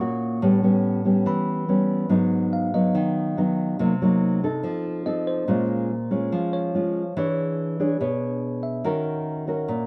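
A dry, close 1970s-style studio sound with small-room ambience frames this smooth, melancholic bossa nova in Eb minor at 143 BPM, where an up-front, thumb-plucked nylon-string guitar with fresh strings carries the accompaniment through chords such as Abm7, Cm7b5, F7 and Bbm7, while a quieter, bell-like tine electric piano adds bright, clean color above it until 9.0 s.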